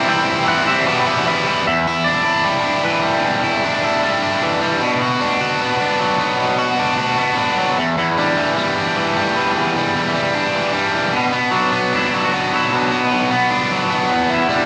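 Driven by a straight 4/4 pulse, this restless, bittersweet rock fragment puts a bright, double-tracked overdriven guitar up front, picking a biting riff throughout, while a clean, fingered twangy electric guitar with spring reverb and slapback echo sits in the background carrying the melody, dropping out at 4.6 seconds and returning at 8.0 seconds, all set in a lush hall reverb with the rough feel of a home demo.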